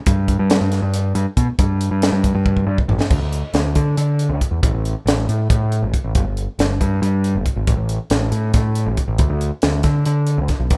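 A growling, overdriven picked electric bass anchors this intricate, playful stretch of math rock and midwest emo, sitting up front in a lopsided 7/8 with a straight feel and a direct, amped bite. Beside it, a crisp fusion drum kit in a small, pumping room brings bright cymbals, a high-tuned snare and a punchy kick, its sound saturated and gritty. A drum fill from 2.5 to 3.1 seconds pushes the music into its next section, all captured in a rough, nearly dry home-demo mix.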